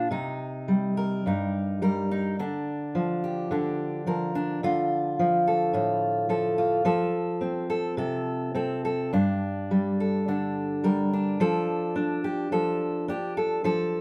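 Reflective and haunting, this short folk excerpt features a solo fingerpicked steel-string acoustic guitar in C dorian, moving freely around 107 BPM in 4/4 with a rubato feel. The guitar sits up front with a warm, auditorium-like tone, ranging from G2 to Bb4 as it passes through Cm, Bb/D, Dm, F, Gm and Dm/F over 14.0 seconds. A wet studio reverb with a 0.8 s decay surrounds the playing, giving it the sense of a live performance in a single room.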